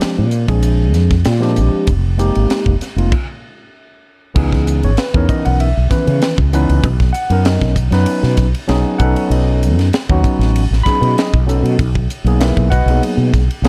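A mellow fretless electric bass stands out at the front of this driving, intense electric jazz fusion passage, its dark, round, punchy tone coloured by analog chorus as it holds the low end throughout. Beside it, an overdriven tine electric piano plays the accompaniment through a combo amp, sounding bright, barky and gritty under a lush chorus, moving through rich chords such as Bb13 and Fm11 in F dorian. A crisp fusion drum kit keeps a straight 4/4 at 97 BPM, with a high-tuned snare, a punchy kick, hi-hat, ride and crash cymbals captured in an airy, polished studio room. The band halts together in a stop at 3.1 seconds, then at 4.4 seconds the music shifts to C# dorian, passing through C#m7, Bmaj7 and B9 before settling on Emaj9#11/B. Studio reverb frames the whole in a dark production, and the passage is cut from a longer piece.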